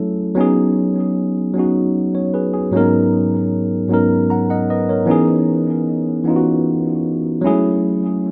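A tine electric piano plays alone from the very start, its worn, slightly out-of-tune voice sitting up front in this tender R&B fragment cut from a longer piece. The tempo is a slow 51 BPM counted in dotted quarters, with a straight 6/8 feel, in B major tuned to A4 = 439 Hz. The piano covers a range from G#2 up to A#5 and moves through B69, G#m11, C#m9 and F#m9, with the last chord arriving at 7.4 seconds before the passage ends at 8.3 seconds. Tape echo trails the keys, and a wet plate reverb with a 2.4-second decay surrounds the sound. The rough home demo mix gives the whole fragment a warm, unpolished character.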